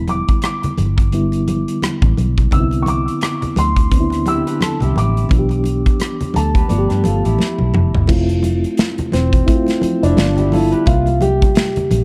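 A grand piano with audible action noise and long sustain carries the melody through an analog delay over a reedy electric piano with fast tremolo and a round, foam-muted fingered bass, joined at 0.1 seconds by a punchy, up-front drum kit and bright congas in the background, in this smooth, silky 1970s-style soul excerpt at 86 BPM with a swung 16th feel, where a twangy, slightly broken-up electric guitar riff enters at 4.3 seconds, chords move from Em7 through Cmaj9 and G9, and a drum fill at 7.4 seconds leads into a new section on Fmaj7, all set in light, small-room reverb with a dark production.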